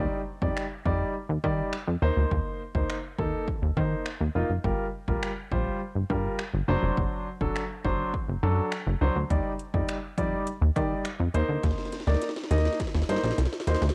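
Energetic and driving, this 103 BPM dance-pop excerpt, cut from a longer piece, sets a dark, mellow grand piano and a plucky, funky analog bass up front, both pumping to the sidechain while the piano carries a cassette-tape grain through a progression of Ebmaj7, Cm7, Gm7 and D7. A house drum kit enters at 0.4 seconds with a punchy kick, cracking snare, metallic hats and finger snaps, overdriven and re-recorded in a large room, and it plays a fill from 11.6 seconds to the end. The whole carries light reverb and the character of a home cassette recording.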